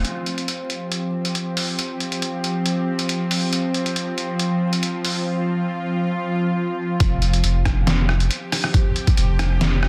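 A tense, string-like drone sits up front from the first second, its bright detuned sawtooth unison carrying a noise layer, slow attack, vibrato and its own reverb as it sustains an F5 chord between F3 and G4. This cut from a longer deep dubstep piece is dark and heavy, moving at 138 BPM in 4/4 with a half-time feel, tuned to A4 = 442 Hz. A trip hop sampler-style kit of hi-hat, rim click and a medium-tuned snare runs throughout, pitched down, muffled, compressed and overdriven. A soft, round sub bass made from triangle and square waves touches F1 at the very start, then returns at the drop at 7.0 seconds. At that point a thumpy, overdriven electronic kick enters and plays until 9.2 seconds. Light reverb, vinyl crackle and a dense, heavily limited modern master give the sound its gritty weight.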